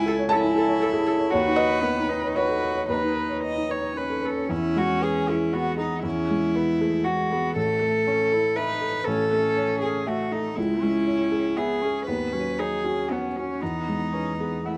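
A felt-muted upright piano and a single bowed cello begin together in this intimate, tender neoclassical fragment, which is cut from a longer piece and moves in a flexible, rubato three-beat lilt. The piano sits up front as the accompaniment, its soft, mellow tone reaching from the deep bass to the upper middle register. The cello carries a second line between B3 and B4, played sul tasto with a pure, floating sound. A lone viola joins at 0.1 seconds, quieter in the balance, adding close, airy bowing with light vibrato and a slapback echo on its notes. The harmony drifts through gentle added-ninth and seventh chords and arrives on a plain E chord at 13.6 seconds, and the outdoor recording, with little reverb, keeps the trio natural and unadorned.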